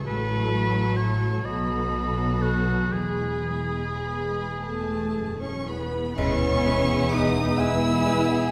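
Heard from farther back in a reverberant recital hall, this serene, lyrical romantic orchestral movement in E major sways in a rubato 6/8 at a slow 34-45 BPM, cut from a longer piece. Bowed string sections carry it throughout: violins sing the expressive vibrato melody high above a second violin line, lush violas, a portamento-touched cello section and a smooth, even double bass section, while a ringing harp plays arpeggios in the background and a clear solo oboe adds a second line. A cymbal swell, dark clash cymbals and concert bass drum join at 2.9 seconds, an airy, hollow flute enters at 4.6 seconds, and at 6.2 seconds a distant clarinet, a very quiet bassoon and a mellow French horn section playing sustained chords arrive with an orchestral accent.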